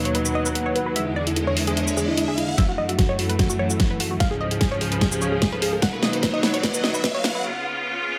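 Over a half-time 4/4 groove, this chaotic, menacing heavy wobble dubstep passage layers lush, biting bowed strings holding pumping chords up front beneath a punchy, detuned sawtooth pluck melody with delay, while a warbling lo-fi pad with chorus and pumping adds nostalgic texture and an electronic riser hovers in the background from 0.8 s; a tape-warm drum kit brings a huge snare and bright hats, and a knocking electronic kick joins at 2.6 s as a build-up and filter sweep get underway, with a break arriving at 7.4 s.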